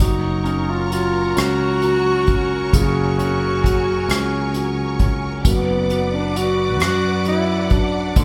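Six-eight pop ballad with a swaying, heartfelt mood, cut from a longer piece and set in the moderate reverb of a recital hall. A breathy tenor saxophone carries the melody in a mellow, jazz-style subtone with light vibrato and scooped notes, over a clear, intimate grand piano whose action noise is audible, and distant, lush bowed strings holding sustained chords. An up-front fretless electric bass adds a bright, growly line, while an acoustic drum kit played with bundle sticks gives punchy kick, hi-hat and rim clicks, with the harmony moving from F# to Bm/F# at 5.4 seconds.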